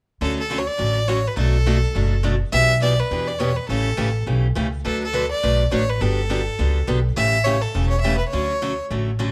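A clear, smooth fiddle with light vibrato and a touch of plate reverb carries the melody in this cheerful, down-home western swing excerpt at 207 BPM in D major, with swung eighths, a bright, boxy picked parlour guitar with audible finger squeak, and a woody pizzicato upright bass moving through Dmaj7, Bm7, Em7/B, A7, D6 and Gmaj7 before the fiddle stops at 8.8 seconds.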